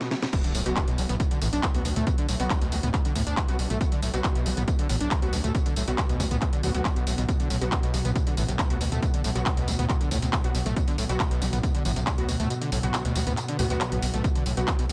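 A straight 4/4 pulse at 138 BPM drives this relentless, intense peak-time techno in B minor, cut from a longer piece: a punchy, up-front electronic kick anchors a layered kit of cracking snare, metallic hats, handclaps, tambourine, toms and crash, all pumping against the sidechain, while a gritty, sync-edged synth bass growls beneath. Over them a screaming, squelchy acid riff with resonant filter sweeps, distortion, chorus and tape echo rides along, as thick detuned rave stabs sit in the background and an eerie, inharmonic FM drone hovers on B2 from 1.5 seconds. The drop opens with a quiet electronic impact at 0.3 seconds, and the kick drops out at 12.5 seconds, with a faint swell rising at 13.6 seconds, all set in an echo-heavy mix with light digital ambience.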